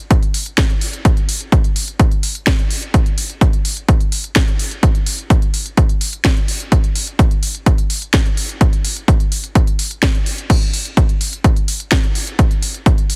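Dramatic and hypnotic, this short techno excerpt at 127 BPM in a straight 4/4 pairs a punchy, up-front electronic kick drum with a layered techno drum kit of cracking snare, smooth hi-hats and crash cymbal, both parts tape-warm and re-recorded in a small room, running from 0.1 seconds to about 13 seconds with little reverb and a heavily compressed, radio-like sound.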